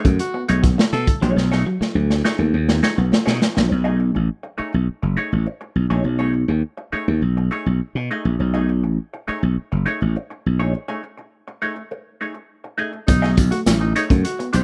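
A strutting, energetic funk excerpt opens with a dark, wah-soaked hollow-body jazz guitar, a very quiet, twangy clean guitar riff and a crunchy, gritty breakbeat kit with a tight kick, joined at once by a growly, punchy slap bass up front and a brief whisper of breathy tenor saxophone with vibrato and scooped notes. The drums and riff drop out at 3.7 seconds, leaving the bass and hollow-body guitar to carry the middle stretch through a break at 10.7 seconds. At 13.1 seconds the drums and saxophone return, with the riff following a moment later and a jingly tambourine in the background, all in the rough, small-room sound of a home demo.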